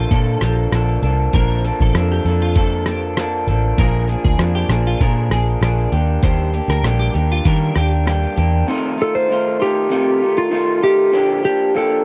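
Laid-back and sunny, this indie and bedroom pop excerpt in Bb major moves at an easy 98 BPM in a straight 4/4, drifting from Bbmaj7 through Bb7 and Ebmaj7 before settling on F7 and Bb6. An electric guitar through a small old amp carries the accompaniment throughout, its slightly broken-up, fingered tone soaked in lush chorus and warbly pitch drift. Beside it, a clean, picked electric guitar with a scooped tone plays a quiet second line under ensemble chorus and tape echo. A foam-muted vintage bass, dark and round, sits up front with a lo-fi sampler-style kit whose thumpy kick, hi-hat and rim click sound muffled and re-recorded in a small room; the drums stop at 8.5 s and the bass at 8.6 s. At 9.0 s a clean lap steel takes the melody, played with fingerpicks and slide and dressed in chorus and tape echo. The whole piece has a dry, close 1970s-style studio sound with little reverb.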